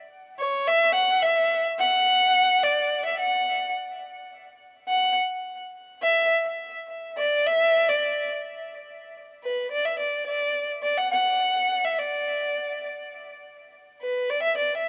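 Wistful and melancholic, this short Andean folk passage moves at 106 BPM in a straight 2/4, cut from a longer piece. A single bowed violin carries the whole solo, entering at 0.4 seconds and playing through to 14.9 seconds, sitting between B4 and F#5. Its tone is rich and focused with a smooth top and vibrato, placed up front and colored by an analog delay. The music falls into two sections, the second beginning at 8.6 seconds. The home cassette recording surrounds the lone line with a moderate studio ambience.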